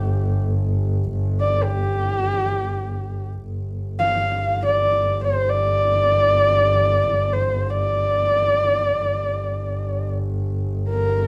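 In free time, this short excerpt of Mongolian folk music unfolds with a windswept, solemn mood, cut from a longer piece. A horsehead fiddle carries the melody from start to finish, its bowed horsehair strings giving a dark, husky, woody tone with vibrato and portamento, moving between G4 and F5. Beneath it, a double bass bowed by a single player holds a drone on G1 for the full 11.3 seconds, its soft attack, vibrato and glides lending an expressive, warm depth. Both instruments sit up front, with the fiddle slightly more prominent, and the pair sound as if playing live together in one room. A moderate studio reverb gives the space a modest sense of air, while the same opening phrase returns at 3.4 seconds and carries through to the end.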